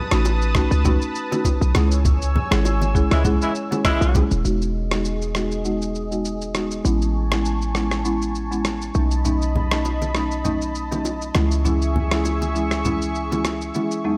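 A lush, warbling pad of detuned sawtooth chords opens this breezy, romantic afrobeats excerpt at 100 BPM, joined at once by a woody, rustic marimba, a punchy, heavy 808-style bass and a gritty, pitched-down sampler drum kit with a thumpy kick, rim click and shaker, while soft-handed bongos and congas sit in the background. A tight horn section with light vibrato and octave doubling makes a brief appearance from 3.1 to 4.2 seconds during a band accent. From 4.4 seconds a filter sweep colours the second section as the chords move from Emaj7 through Amaj7 and B7 to C#m, all in a small room ambience.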